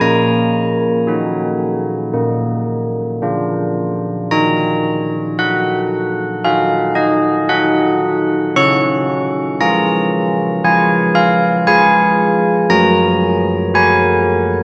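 Heard through a worn cassette with a warbly pitch drift, this excerpt sits in a cavernous cathedral reverb that lets every strike hang in the air. A solo carillon plays a solemn, wintry classical bell tune at a slow, stately pace, its bronze tones up front, with the clang of the iron clapper and a distinct minor-third overtone ringing across a span from Gb3 to Db6. The harmony moves from Ebm/Bb through Bb, Ebm and Db before settling on Gb near 12.7 seconds, ending as the cut from the longer piece closes at 14.6 seconds.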